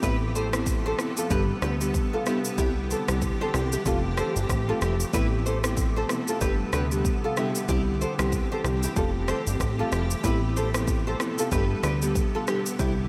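A punchy, wave-folded analog bass with a filter pluck and a fast attack anchors this mellow, sultry afrobeats groove at 94 BPM, swung on the sixteenths, with an electronic drum kit of deep kick, rim click and shaker sitting up front beside it. A dry, woody marimba with a buzzing tone plays the accompaniment while a fingerpicked nylon-string guitar, full-bodied and deep, repeats a riff through analog chorus and delay. A blurred, cloudy granular pad holds sustained chords over a cycle of Amadd9, G, C and Fadd9, and a lush hall reverb gives the whole dreamy excerpt a soaked, hazy space.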